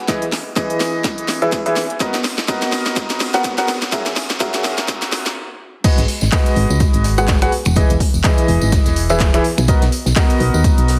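An up-front grand piano riff, clear and present with sidechain pumping, a low-pass filter and tape echo, drives this euphoric, uplifting piano house excerpt at 125 BPM in B major, swung on the 16ths over Emaj7, Bmaj7 and F#9 chords through a build-up with a drum fill and a brief stop at 5.4 seconds. An overdriven, punchy analog kick and a layered house kit with a cracking snare, crisp hats, claps, snaps and cymbals run throughout; the drop at 5.8 seconds adds a very quiet, dry reggae kit with a high-tuned snare and a close tambourine in the background, and a round, mellow FM bass with a fast attack and sidechain pumping follows at 6.0 seconds. The mix carries a heavily compressed radio sound with moderate plate reverb and small room ambience.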